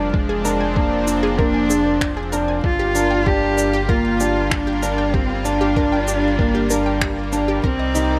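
Melancholic and intimate, this short cut from a longer piano and strings electronica piece moves at 96 BPM in a straight 4/4, shifting from Bb7/F to Gm7 and touching Cm9 near the end. A single woody, bowed cello carries the melody with vibrato and digital delay over a soft, felt-muted upright piano riff with audible action noise, while a lush, detuned unison pad holds chorused chords and a round analog bass anchors the low end, both with sidechain pumping. A punchy unison pluck spins pumping, delayed arpeggios in the background, and a muffled, pitched-down kick is soon joined by tape-warm electronic shaker and finger snaps, the mix set in light reverb and digital ambience.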